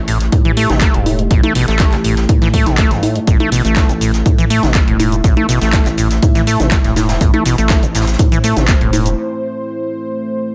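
A squelchy, resonant sawtooth acid bass sits up front with overdrive, cassette-tape grit and delay, its riff running under a filter sweep in this driving, gritty acid house cut from a longer piece at 122 BPM in A minor. Beneath it, a round, deep analog bass and a punchy, tape-warmed electronic kick anchor the groove. An analog drum machine adds congas, handclaps, hi-hat and shaker, while a very quiet, distant jazz brush kit contributes hi-hat and a high-tuned snare. A moody, detuned analog pad with chorus and sidechain pumping holds sustained chords over an A5 harmony in a digital ambience, and it carries on alone through the break from 9.2 to 10.5 seconds.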